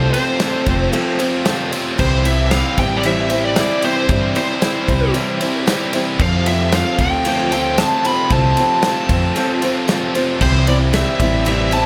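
Reflective and wistful, this folk rock and heartland rock excerpt moves in a straight 4/4 over an F and C progression, with a dark, distorted, bluesy lead guitar singing the melody through analog delay. A full-bodied jumbo steel-string acoustic guitar and a bright, double-tracked overdriven electric guitar riff sit beneath it, both touched with the same delay, while a woody, growly pizzicato upright bass anchors the low end. A natural country drum kit with a punchy kick, medium-tuned snare, ride and crash plays alongside a very quiet, jingly tambourine, all set in light reverb and small-room ambience within an echo-heavy mix.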